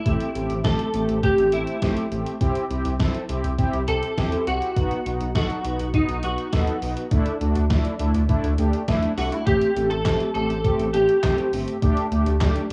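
A straight 4/4 pulse at 102 BPM from a clean 12-bit digital drum machine, with a thumpy kick, medium-tuned snare, hi-hat and handclaps, drives this cool, nocturnal synth-pop fragment: a rubbery, bouncy square bass sits beneath mellow, brassy synth brass built from detuned sawtooth with chorus, while an up-front, clean picked electric guitar carries the melody through ensemble chorus and analog delay until 11.5 s, over chords moving from Am7 through C, B and Dsus2, back to Am7 and on to Dsus4, with cassette tape colouring the guitar, brass and drums, and light reverb and small-room ambience giving it the feel of a home cassette recording.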